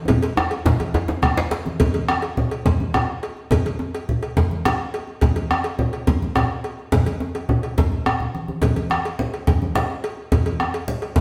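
A rolling 12/8 pulse at 141 beats per minute drives this festive West African drum ensemble, heard in a short cut from a longer piece that is played live in a stone room whose reverb lends a wet ring. A round, vintage-toned bombo sits up front, its band-limited thump anchoring the groove alongside thick-skinned congas played with soft hands. A deep, close djembe runs through the whole passage, while a second, medium-tuned djembe, also struck with soft hands, plays only during the opening drum fill before stopping at 1.5 seconds. A metallic, dry cowbell sits lower in the blend beneath the drums. After the opening fill gives way to the main driving section at 1.8 seconds, another fill arrives around 7.9 seconds before the groove carries on to the cut.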